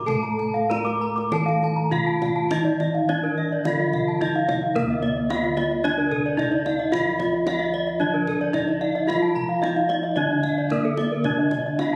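Captured on a phone inside a reverberant recital hall, with added club reverb and compression, this short cut from a longer Balinese gamelan piece sounds hypnotic and brilliant. It moves in a straight 4/4 at 94-111 BPM in D pelog, shifting into a new section at 4.8 seconds. Up front, a bright, airy bronze metallophone struck with a horn mallet carries the melody between Bb3 and Bb4, its paired tuning producing shimmering beats. Beneath it, a mellow, soft metallophone played with padded disc mallets holds the low accompaniment. Two more metallophones with horn mallets spin arpeggios higher up, one boxy and warm, the other ringing and bright. Round, beating bossed gongs anchor the bass from D2, while a tight, dry kendang struck with hard hands sits close in the mix.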